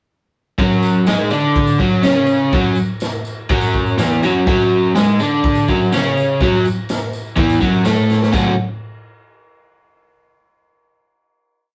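Gritty and menacing, this short garage rock piece in F# minor stomps along at 124 BPM in straight 4/4, led from 0.6 seconds by a double-tracked, overdriven electric guitar playing a compressed octave riff up front. A raw acoustic drum kit with a punchy kick, medium-tuned snare, crash and ride cymbals drives a dark, saturated garage stomp groove with a rolled-off top, while a jingly tambourine sits distant in the background. A drum fill at 8.1 seconds leads into a final chord that rings until 10.3 seconds, captured as a rough rehearsal-room recording with a short, wet studio reverb.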